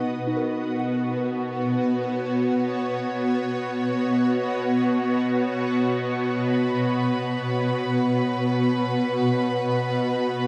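In free time and centred on B major, this peaceful ambient excerpt floats on an up-front shimmering pad of sustained chords with an octave-up sparkle and a warbling, detuned vintage tone, while a very quiet FM synth bell plays gentle arpeggios until 6.5 seconds, a nasal, string-like drone fades in behind them, and at 6.5 seconds a chamber violin section adds a rich, biting texture with light vibrato, all set in a dark production with a huge, wet reverb.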